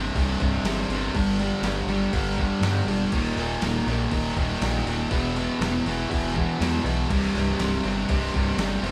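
A straight, steady 4/4 pulse drives this short cut from a longer quiet-loud alternative rock piece, its mood bittersweet yet anthemic. A bright, double-tracked fuzz guitar sits up front, picking a compressed, distorted riff low in its register over power chords moving from C5 to G5, Eb5, E5 and back to C5. Beneath it, an overdriven fingered electric bass supplies a dark, round, amped low end. The drums arrive at 0.2 seconds: a sampler-style boom bap kit, pitched down and gritty, with a thumpy kick, a medium-tuned snare, hi-hat and crash cymbal, re-recorded in a large room. The band sounds as if playing live in one space, touched by light reverb.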